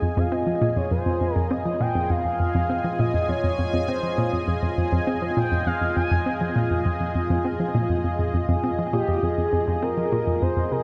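In a straight 4/4 pulse, this cosmic, mysterious ambient excerpt rests on a single Fm7 chord for its full 10.8 seconds. A hollow, bouncy square-wave pluck carries the riff in the low register, detuned and wave-folded with a sub octave, a noise layer, chorus and tape echo, its fast attack and short decay sitting up front in the mix. Above it, a sweeping, resonant pad holds sustained chords, full-bodied and evolving, built from sawtooth and sine with a filter swell, slow attack, long release and chorus. An expressive synth lead sings the melody with a smooth, dark sawtooth-and-sine tone, wave-folded, with vibrato, chorus and tape echo. The whole production is dark and warm, bathed in a huge, wet reverb with a long tail.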